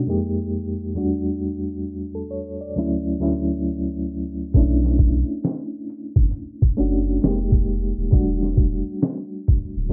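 A gritty, pitched-down trip hop sampler-style drum kit with a thumpy kick and medium-tuned snare arrives at 4.5 seconds alongside a round, deep dub sub bass, both sitting up front in this nostalgic, reflective lo-fi hip hop fragment at 67 BPM with a swung 16th-note feel. Before them, a reedy, bright electric piano with fast tremolo, cassette tape character and a low-pass filter plays alone from the start, moving through Fm11, Em11, Dmaj9 and Bm11 chords. Light reverb, worn tape with warbly pitch drift, and a filter sweep running the whole 9.9 seconds give the recording its hazy, aged sound.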